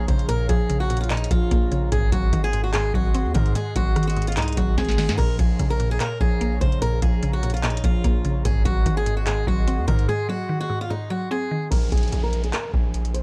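A brooding, hard-hitting trap excerpt in Bb minor at 147 BPM with a half-time feel opens with a boxy, picked acoustic guitar melody in a swing style, a woody, round mallet-like synth pluck with chorus, and a glassy, ethereal FM pad sitting in the background, all over a distorted, saturated 808-style bass and a booming analog drum machine with a deep kick, tonal snare, handclaps and metallic hats. The chords move between Bbm7 and Ab7, with a drum fill at 4.8 seconds and a break at 10.1 seconds. At 11.7 seconds the pluck and pad stop as a downlifter enters over a Bb5 chord, in a dark, dry production with the drums up front.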